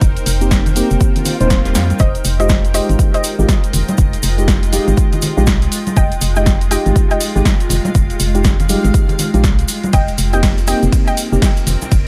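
Dry and close, this excerpt of smooth, moody deep house swings along in four, with an overdriven electronic kick sitting up front and a layered kit adding a punchy snare, hi-hat and ride cymbal. Beneath it, a hollow, organ-like FM bass gives a dark, percussive low end that pumps against the kick, while a grainy tube shaker ticks in the background and damped, thick-skinned congas played with soft hands join at 0.7 seconds. A granular cloud pad hangs behind everything as a blurred, evolving haze, and a mellow FM electric piano drops in short stabs with a warbling, vintage tone coloured by chorus, tremolo and tape echo. An electronic swell and a drum fill lead to 2.0 seconds, where a gentle, round pluck begins a soft melody in the upper register, treated with analog chorus and tape echo. The harmony rests mostly on a lingering Fm9 before settling back to Eb6/F near the close.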